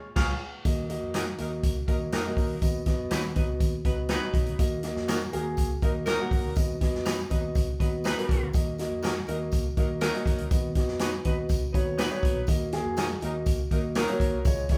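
Passionate and driving, this uptempo 1960s-style soul excerpt moves at 122 BPM in Eb minor, opening with a band accent before settling into a groove that circles between Eb minor and B chords. Up-front swinging big-band drums with a punchy kick and medium-tuned snare play alongside a dark, foam-muted fingered electric bass, while a boxy concert grand piano with deep bass and long sustain carries the accompaniment from 0.6 seconds. A twangy clean electric guitar adds picked stabs in the background, a jingly, distant tambourine shimmers behind, and a vintage saxophone section with vibrato plays a mellow second line from 1.1 seconds, all captured live in one room with moderate large studio reverb.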